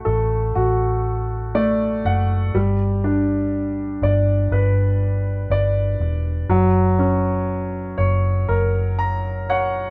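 A clear, open concert grand piano with a deep bass begins this tender, emotional pop ballad excerpt at a slow 60 BPM, joined almost at once by a dark, round, foam-muted electric bass, with both sitting up front in a shared room with moderate reverb as the harmony moves from F#m to G and then F#, and the piano adds fills at 1.1 and 8.5 seconds.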